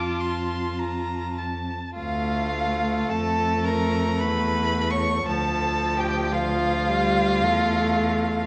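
A short excerpt heard in the wet reverb of a recital hall, this slow romantic movement for string quartet drifts in rubato triple time at around 50-57 BPM in D minor, its mood lyrical and warm. A clear, close violin carries the bowed melody high up with smooth vibrato, a second violin weaves its own line alongside, the rich viola fills in the accompaniment, and the cello holds a low, even bass that sounds distant yet up front. The harmony moves from F to D minor at 2.0 seconds, touches an Aadd9 over E at 4.2 seconds, and returns to D minor at 5.3 seconds.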